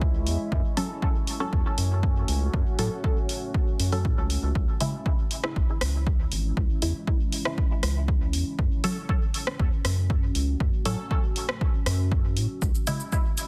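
Dub techno at 119 BPM, meditative and hazy, cut from a longer piece, where an overdriven, punchy electronic kick sits up front beside an overdriven deep house kit of cabasa, hi-hat and rim click, a round, wave-folded analog bass with tube saturation, filtered detuned sawtooth chord stabs carrying phaser, dub echo and a filter sweep, and a moody, detuned ambient pad with chorus and built-in reverb holding sustained chords low in the mix, the bass, stabs and pad all pumping to the sidechain as the harmony moves between C#m and F#m in a dense, heavily limited master.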